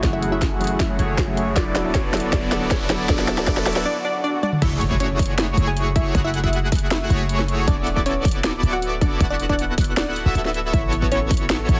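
Future bass in F# minor at 157 BPM with a half-time feel, this bittersweet, lush excerpt builds for 4.6 seconds as a detuned unison pluck with cassette-tape grit and dub echo carries the melody over a filtered soft supersaw, a worn tine electric piano, dark studio strings, a riser and a trap kit fill, all above a punchy kick and boomy 808-style bass. It then drops into a pumping groove where the pluck keeps leading, an airy, dreamy lead arpeggiates high in the background, and a soft round pluck slips in at 10.7 seconds, all under light reverb and a heavily compressed radio sound.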